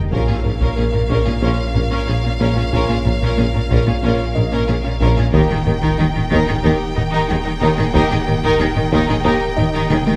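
Heavy-stick taiko drums stand out at the front of this brooding, tense cinematic cue, a hybrid orchestral and electronic film score in Bb dorian at 92 BPM in a straight 4/4, cut from a longer piece. A lush, focused violin section carries the melody high above, while a second, smoother violin line sits in the background, with a distant viola section and a rich cello section filling out the bowed string body. Low support comes from a punchy sub bass with a pitch-drop attack, a mellow tuba, and a very quiet, distant double bass section, while a vintage-toned French horn section holds sustained chords behind. Electronic colour arrives through a glassy, ethereal FM pad and a soft round pluck playing dark, chorused arpeggios, joined by a felt-muted upright piano with audible action noise, each very quiet. The harmony moves from Bbm to Eb at 5.3 seconds, the horns stop at 9.5 seconds, and a drum fill lands at 9.9 seconds, all set in a moderate scoring-stage reverb.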